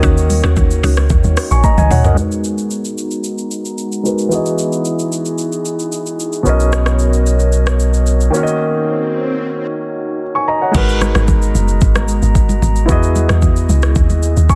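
A dry, dense and heavily limited modern master frames this late-night, soulful amapiano excerpt, moving at 112 BPM in 4/4 with a straight feel in G# minor. A dark, mellow grand piano sits up front with a low-pass filter, playing accompaniment over D#m7, G#m7, Emaj7 and Bmaj7 chords. A glassy, ethereal glass harmonica holds sustained chords that pump against the sidechain under its own low-pass filter, while a woody mallet-like synth pluck adds brief background stabs through chorus and tape echo at the very start. The electronic afro-pop kit drives throughout with a deep kick, smooth hats, rim clicks, shaker, toms and crash, joined by close, thick-skinned congas in the background as a percussive FM log drum bass booms up front in the opening drop and again from 10.7 s. During the filter sweep, a round analog bass blending square, sine, triangle, sawtooth and wave-folded tones takes the low end at 6.5 s, and an electronic swell enters over a break at 8.7 s before the groove returns.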